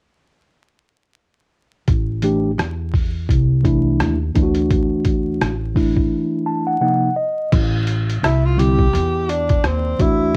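Cool and mellow, this swung jazz-hop cut from a longer piece opens with a woody, pizzicato upright bass and a muffled, compressed sampler-style drum kit with a thumpy kick, rim clicks, hi-hat and crash, soon joined by a clean, mellow tine electric piano that fills the break at 6.1 seconds. At 8.2 seconds a warm, subtoned tenor saxophone takes a short solo with vibrato and analog delay, over chords moving from Am through Dadd9 and Cm7b5 to Am7. Light reverb, cassette tape saturation on the keys and horn, and a bed of vinyl crackle give it an intimate home-recorded feel.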